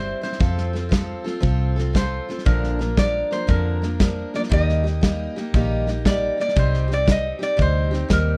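A sunny, down-home honky-tonk and classic country passage in Bb major at 117 BPM with a swung 4/4 feel opens on a nasal, metallic lap resonator guitar carrying the slide melody with fingerpicks up front, over a bright, full-bodied dreadnought steel-string acoustic guitar picking the accompaniment and a round, foam-muted vintage electric bass, with a punchy small-room drum kit of kick, medium-tuned snare and hi-hat joining at 0.2 seconds as the chords move from F to Bb, Eb and C minor in a dark, lightly reverberant production cut from a longer piece.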